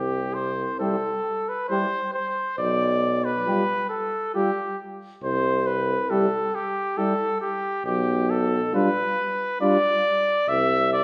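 A classical brass quintet excerpt, noble and triumphant in mood, unfolds in a slow triple metre with a flexible, rubato feel. An up-front trumpet with a clear tone carries the melody across the full 11 seconds, anchored by a tuba that is likewise up front, its bass line clean and slightly vintage in colour. At 0.8 seconds the inner voices enter: a mellow, smooth-topped flugelhorn on a second line and a soft-attacked French horn with light vibrato in accompaniment, both set in the background. A euphonium with a warm, roomy tone and light vibrato holds a single accompanying note from a distance, and these three inner parts stop at 9.8 seconds. The harmony moves gently between tonic and dominant chords, and a resonant recital-hall reverb gives the ensemble the spacious sound of a church or concert hall.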